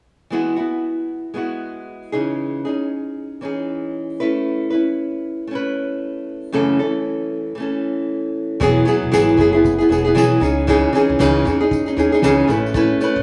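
Sunny and easy-going, this acoustic pop excerpt in swung 4/4 opens with a bright, fingerpicked nylon-string guitar up front, moving through add9 chords with a minor-seventh turn, wrapped in a moderate plate reverb and the small-room feel of a rough home demo. At 8.6 seconds a woody, growly pizzicato upright bass joins, along with a cloth-damped, thuddy drum kit sitting muffled and gritty in the background with a fat snare, tight kick and shaker. A jingly tambourine sits faintly behind them.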